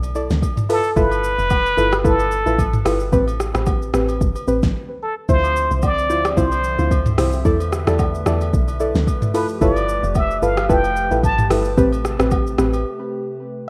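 Deep and late-night, this amapiano excerpt in A minor moves at 111 BPM with a light 16th-note swing, built on a round, dark log drum bass and a gritty, up-front R&B kit with a soft kick, fat snare and metallic hats, while agogo bells, woodblock, egg shaker and handclaps sit in the background. Mellow chord stabs treated with chorus and digital delay cycle through E7sus4, G13, Am9 and Dm9, beneath a plunger-muted jazz trumpet solo whose wah-wah tone, light vibrato and scooped notes carry the melody. After a short break at 4.8 s, a hollow, flute-like pad with chorus enters at 5.3 s and lingers until the end at 13.7 s, all within a rough home-demo mix wrapped in digital ambience.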